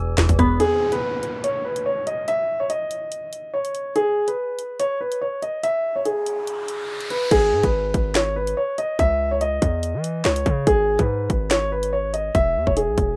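A rough home-demo sound with light reverb frames this menacing, tense drill excerpt, set in G# minor at 143 BPM with a half-time feel in 4/4. A dark, mellow baby grand piano carries the melody up front from the start, its long sustain hanging over the track from 0.0 to 13.2 seconds. Glassy digital keys with chorus and a filter sweep sound only briefly in the opening moment over an E chord, joined by a distorted, saturated 808-style bass, before the harmony drops out and an electronic downlifter and riser fill the space, the riser building from 6.0 seconds. The drill kit, produced and up front, brings a hard-clipped kick, sharp snare, warm hats, rim clicks, finger snaps and crash cymbal. At 7.3 seconds the heavy, aggressive bass returns with a noisy edge as the chords move through G#m, C#m, back to G#m and on to E.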